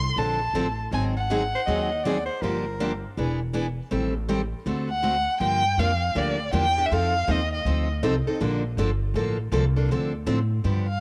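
A bowed violin carries the melody with expressive vibrato, soft attacks and sliding portamento, its tone colored by cassette tape and a tape echo as it drifts between phrases in this bittersweet, swinging jazz manouche excerpt at 160 BPM in G minor. Underneath, an upright bass on gut strings gives a woody, thumpy pizzicato foundation that runs the full 11 seconds, while a bright, picked steel-string acoustic guitar supplies the accompaniment, also with a cassette tint. At 1.6 seconds a growling soprano saxophone slips in with a raspy, gritty second line, close-miked with subtone and vibrato, and it drops out by 3.2 seconds. The harmony moves through minor sevenths and dominant chords such as Dm7, Ab7, Gm7 and E7 before the second section settles into Gm7, F7 and Bbmaj7. The whole performance has the intimate feel of a home cassette recording, set in a moderate spring reverb.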